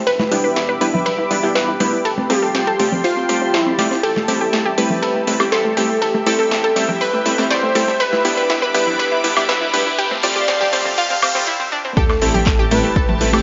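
A lush, thick unison pad with chorus opens this dreamy, bittersweet progressive house excerpt in A minor at 121 BPM, soon joined by a catchy, vibrato-tinged unison lead, a round warbling analog pluck with tape echo, a punchy supersaw stab, a very quiet rumbling detuned saw bass, gritty breakbeat-style drums, smooth deep house hats, claps and woodblock, and soft-handed congas, all building under filter sweeps over Em7, Fadd9 and Am7 chords in a lush hall, with a riser and sub drop arriving at 8.7 seconds, a brief break at 11.5 seconds, and an up-front deep electronic kick landing with the drop at 12.0 seconds.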